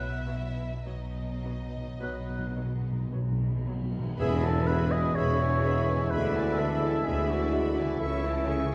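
The up-front bowed double bass section anchors this serene, slow romantic orchestral passage in E major, moving in a rubato 4/4 at around 51-64 BPM and cut from a longer piece. Above it, a chamber violin section carries the melody with focused vibrato, while a second violin section with a smooth top, an airy, hollow concert flute, a dark, distant clarinet and a very quiet cor anglais weave second lines. Lush cellos, a very quiet, even viola section, a shadowy bassoon, close-miked mellow French horns and a ringing, fingerpicked harp playing arpeggios fill out the accompaniment, as articulate, dry timpani with hard mallets play a fill and continue until 5.6 seconds. At 4.2 seconds the harmony moves from B to E with a band accent: trombones add sustained chords, trumpets with a smooth top place stabs, a clear, vintage-tinged tuba joins the bass, and a bright tam-tam shimmers in a live room. 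The chords then pass through E7/D to A/C#, all set on a scoring stage with moderate reverb and a dark, warm production.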